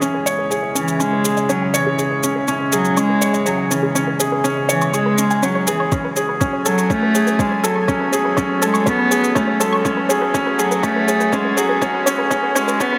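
Melancholic and intimate, this piano and strings electronica cut from a longer piece moves at 122 BPM over C#m and then F#madd9, building up as a filter sweeps across the unison pluck's detuned sawtooth arpeggios, which carry sidechain pumping and delay under a thick, warbling pad of sustained chords with chorus. Up front, a felt-muted upright piano plays a soft, mellow riff with delay, while a distant cello with a reedy, gut-string tone enters at 0.8 seconds to carry the melody through a low-pass filter and delay, and a tape-warm layered shaker ticks throughout. At 5.9 seconds a soft, overdriven electronic kick drum joins, and a huge ambient reverb bathes the whole excerpt.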